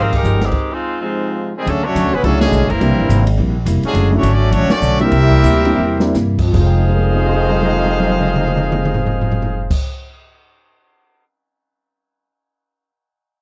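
A dry, close 1970s-style studio sound frames this sultry, dramatic big band swing excerpt, where a vintage saxophone section opens on the melody over clean hollow-body guitar, a woody, growly upright bass and an open drum kit with dark cymbals and a boomy kick, then after a band stop ending at 1.7 seconds a distant trumpet section with vibrato carries the tune above a mellow trombone section and a baby grand piano in the background, as the band slows from 3.9 seconds and drum fills drive the final section from 6.7 seconds.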